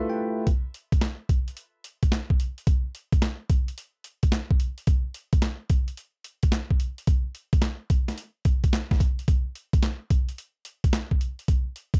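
R&B in a punchy, slick new jack swing style at 109 BPM with a swung sixteenth-note feel opens with a brief, bright, bell-like tine electric piano fill up front before a compressed, gritty boom bap sampler-style drum kit, pitched down, with a thumpy kick, high-tuned snare, handclaps and hi-hat, takes over from 0.5 seconds to the end of this dry, close, 1970s-style studio cut from a longer piece.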